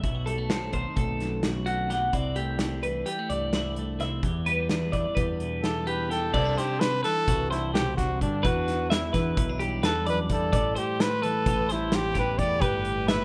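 A warm trumpet takes the melody from 5.6 seconds, sitting up front with light vibrato and a pop-style delivery over a restless, intricate blend of math rock and midwest emo. The piece moves in 9/8 at 258 BPM, counted in eighths, with a straight feel in E minor, and this short cut from a longer piece shifts into a new section at 6.3 seconds. Two bright, twangy twelve-string electric guitars play clean and compressed throughout, one picking the accompaniment in the lower range while the other spins arpeggios higher up. Beneath them, a growling picked electric bass, dark, round and overdriven, holds the low end. A loose indie drum kit sits up front with dark cymbals, a tight kick, a medium-tuned snare and a pumping small-room character. The harmony drifts through rich chords such as B7b9, Cmaj9#11 and Am9, and light studio reverb gives the recording the feel of a rough home demo.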